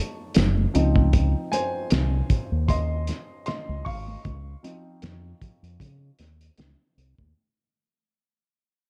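A dark, dry production with little reverb frames this lush, romantic slice of 1970s-style soul in Db major, drifting at 77 BPM with a light sixteenth-note swing and fading out across its 7.4 seconds. A baby grand piano with natural, short-sustained tone takes the solo over chords moving from Gbm6 to Dbmaj9 and then Dbmaj7. It is supported by an up-front, round fingered electric bass and a cloth-damped, muffled drum kit with a fat snare, a tight kick and a gritty, saturated character. High-tuned congas with thick, damped skins sit softly in the background, while a jingly vintage tambourine appears only briefly at 0.4 seconds.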